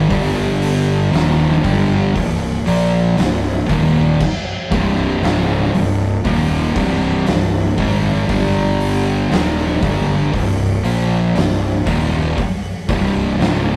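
A rough rehearsal-room recording with tube saturation and light reverb carries this hypnotic, sludgy stoner and doom metal passage in C minor at 59 BPM, cut from a longer piece, where a dark, double-tracked fuzz guitar riff sits up front over a growly, overdriven fingered electric bass and an oversized, low-tuned, gritty drum kit with a fat snare, punchy kick, hi-hat and crash, all circling slowly between G5 and Cm.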